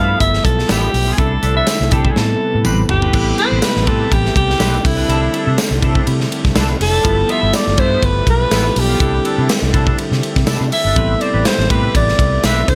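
Polished 1980s jazz-funk pop in A minor at 123 BPM with a lightly swung sixteenth feel and a bittersweet, slick mood, led by a breathy, whispered alto saxophone melody with light vibrato over a mellow tine electric piano with analog chorus, a smooth, warbling sawtooth pad sitting very quietly beneath, a bright, twangy clean electric guitar riff also treated with chorus, and a round, foam-muted fingered bass, while a punchy modern studio drum kit with gated reverb enters at 0.2 seconds and plays a fill from 2.2 to 3.1 seconds, a jingly tambourine joins at 0.7 seconds, and the chords move through G13, C69 and Am9.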